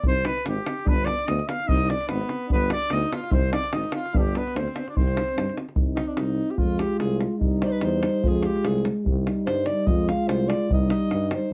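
A swung 2/4 pulse on a deep, close davul drives this restless, virtuosic Balkan brass band excerpt, where a mellow trumpet carries the melody up front until 5.6 seconds over a soft-attack tuba bass, a dark euphonium and a distant, lightly vibrato-tinged French horn sit in the background, and a clear alto saxophone enters at 1.7 seconds before taking a solo from 5.8 seconds, the band heard in a small room with a warm production.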